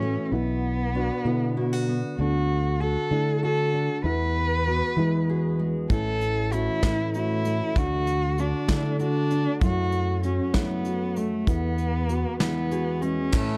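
A nasal, expressive bowed cello with vibrato and portamento carries the melody of this uplifting, nostalgic indie folk piece at 64 BPM in 6/8. It is backed by a fingerpicked steel-string guitar with audible finger squeak, a woody upright piano playing arpeggios in the background, and a punchy fingered electric bass, over chords moving from Bm through D, E, A and F#m. A soft brush drum kit enters up front at 5.9 s, and at 13.3 s, just as the excerpt cuts off, a mellow trumpet, a bright picked acoustic guitar and very quiet handclaps and tambourine join, all set in light reverb with a dark production.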